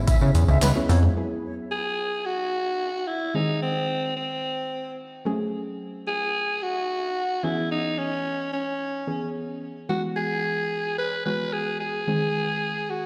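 Heard through a big sound system in a bare stone room with light digital ambience, this bittersweet, driving dance-pop passage at 110 BPM opens on a brief drop. In it, an overdriven deep house kit with a deep kick and punchy snare, a glossy, nasal chorused synth bass with sidechain pumping, a twangy clean electric guitar riff, a distant, airy concert flute with delay, and a jingly tambourine all sound together before falling away by 1.1 s. A soft, round, dark pluck with chorus and pumping carries the C#m7 to Eadd9, G# and F#madd9 changes throughout, while a raspy, forceful alto saxophone with light vibrato and delay takes the solo melody up front from 1.7 s to the end of this cut from a longer piece.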